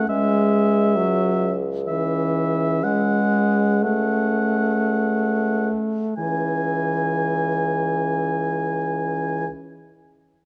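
This excerpt sits in a resonant recital hall, with a wet reverb that lets each note linger for nearly two seconds. It is a slow, melancholic and elegiac romantic movement for wind quintet, moving in a flexible three-beat pulse with rubato and easing back over its first 6.2 seconds. The French horn, up front, carries the accompaniment with a smooth top and vibrato, and the warm oboe, also forward, sings a high second line with light vibrato. Beneath them, a vintage-toned clarinet holds a single accompanying pitch in the background, while a mellow, distant bassoon anchors the bass on one low note with light vibrato and a roomy sound. The harmony rests on a minor chord, shifts to another minor chord over the same bass at 2.8 seconds, and returns home as a new phrase begins at 6.2 seconds, with all four parts sounding together throughout.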